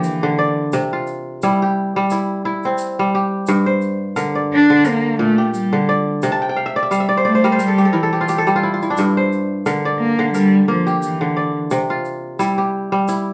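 This short excerpt sits a little back in a wet studio room, with the plucked kora placed up front and ringing crisply over the rest. It is West African traditional string and xylophone music in G dorian, reflective and flowing, at 87 BPM in 4/4 with a light swing on the sixteenths. The fingerpicked kora plays arpeggios across a broad span from G2 to A5 for the full 13.3 seconds, adding a fill between 6.3 and 9.0 seconds. A single bowed cello carries the melody between E3 and D4, its dark, woody tone shaded with vibrato and a plate reverb, and it falls away at 11.5 seconds. A grainy tube shaker ticks softly underneath with a bright edge, while the harmony rocks between G minor and C throughout.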